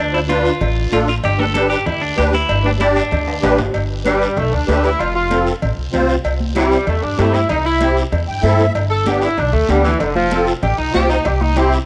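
A joyful, festive cumbia at 192 BPM in 4/4, cut from a longer piece and captured as a home cassette recording in light studio reverb, opens with a twangy, compressed clean electric guitar solo up front that runs until 3.5 seconds over woody, pizzicato upright bass, a reedy, shimmering musette accordion, background percussion of high-tuned congas and ringing cowbell and timbales, and a raspy guiro, before a mellow, roomy saxophone section with light vibrato takes the melody from 4.0 seconds, its tone and the guitar's and accordion's carrying a cassette-tape coloring, while the accordion adds a brief fill.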